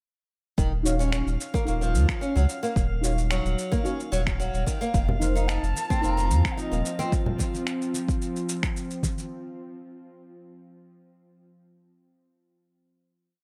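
A meditative, warm piece of organic downtempo in a straight 4/4 groove, set in a dreamy mix soaked in plate reverb. From 0.6 seconds a deep, overdriven electronic kick sits up front beside a gritty, compressed layer of shaker and finger snaps. A round sine sub bass carries a syncopated riff with sidechain pumping, while a bright, boxy flamenco guitar fingerpicks an arpeggiated sequence through lush chorus and delay. Dark, sparse chord stabs, with chorus, phaser and echoing delay, and a glassy, drifting high note in the background fill out the harmony as the chords move from Ebm9 to F7sus4. A breathy, distant ney enters at 4.9 seconds with vibrato-laden call phrases, soon joined by soft-handed congas and a tense, string-like drone that sustains to the close at 9.3 seconds.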